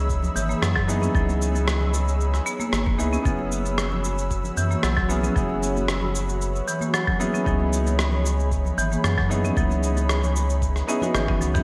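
A muted upright piano with audible action noise, an ethereal, detuned pad with sidechain pumping and a round, deep analog bass open this peaceful organic downtempo excerpt, soon joined by a dusty, gritty sampler-style kit of cabasa, rim click and toms in gated reverb, a thumpy compressed electronic kick, very quiet soft-handed congas and bongos, and a woody hard-mallet marimba playing arpeggios through digital delay, set in a lush hall reverb with bright 1980s-style digital production and a drum fill at 11.1 seconds.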